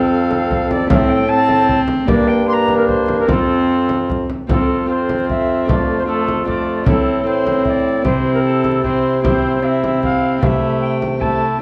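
A classical Renaissance-style consort dance in 3/4 at 152 BPM, this excerpt of a longer piece has a rustic yet courtly mood, with harmony moving from F through Am and Gm before settling toward C and Am/C. A distant alto recorder carries the melody with a pure, woody tone, vibrato and a chiff on its tongued notes, while a mellow cor anglais with a soft attack weaves a roomy second line beneath it. A close, nasal viola with gut-string character and light vibrato shares the accompaniment with a fingerpicked, ringing Celtic harp heard very quietly. An up-front bassoon anchors the bass with a dark, smooth-topped sound, and a deep, large frame drum enters at 0.3 seconds with a live-room feel. The whole consort sits in a moderate stone-room reverb with a dark, warm production and a layer of vinyl crackle, shifting into a new section at 4.5 seconds.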